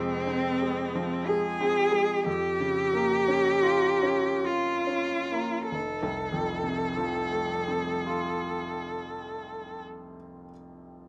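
A light reverb surrounds this short, up-front duo of cello and baby grand piano, cut from a longer romantic classical piece tuned to A4 = 438 Hz. The mood is melancholic and elegiac, moving in a rubato 3/4 at roughly 44 to 63 BPM, with the tempo slowing through the opening 5.7 seconds. A single bowed cello carries the melody in a clear, focused voice with vibrato, singing between C4 and A4 before falling silent at 9.8 seconds. Underneath, the piano supplies a bright, brilliant accompaniment from F1 to F4, with a natural tone and long sustain that rings on alone until 11.1 seconds. The harmony moves from F minor to B-flat minor over F, then turns to F major as the second section begins at 5.7 seconds.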